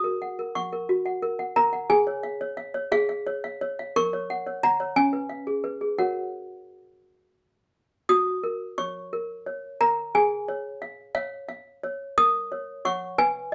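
Close, detailed microphones and light reverb put a solo toy piano up front in a boxy small room, its clanky, bell-like plastic-hammer tone slightly out of tune against an A4 of 439 Hz. This tender, dreamy classical lullaby in F# major drifts in 6/8 at a rubato 59 BPM, the melody ranging from C#4 to D#6 over gentle harmonies that circle from F# through C#/G#, F#/A# and C#7. The opening phrase returns at 8.1 seconds before this extract from a longer piece breaks off at 13.5 seconds.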